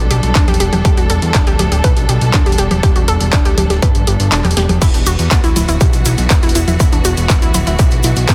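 Over a straight 4/4 pulse at 121 BPM, a distorted, overdriven electronic kick sits up front in this hypnotic, melancholic melodic techno piece. It lands on a groove already laid down by a punchy analog drum machine with congas, handclaps, hats, crash and a tape-tinged snare, plus a very quiet, cloth-damped acoustic kit. A fat, detuned sawtooth bass and a lush, wave-folded unison pluck arpeggio with digital delay pump under sidechain alongside bowed studio strings holding sustained chords from Gadd9 to E5, while the kick drops out at 4.3 seconds around a drum fill and a grainy tube shaker enters at 4.8 seconds in a dense, heavily limited mix.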